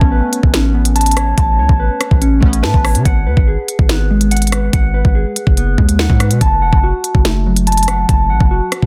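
Menacing and dark, this drill cut from a longer hip hop piece moves at 143 BPM in a half-time 4/4 feel, centered on G# phrygian with a slightly flat tuning. A drill drum kit sits up front with a knocking kick, sharp snare, crisp hi-hats and rim clicks, while a hard-hitting 808-style bass adds punchy, heavy sine weight with a noise layer and a fast, decaying attack. A mellow electric guitar plays clean, fingered, compressed arpeggios through tape echo across the whole 8.9 seconds, its dark tone kept prominent in the mix. Glassy digital keys with a wave-folded edge, a filter sweep and chorus accompany the opening, adding a short fill at 2.4 seconds before dropping out at 3.1 seconds as the harmony moves from Aadd9 to G#m7 and then F#m. The dense, heavily limited modern master and digital ambience keep the sound tight and forceful.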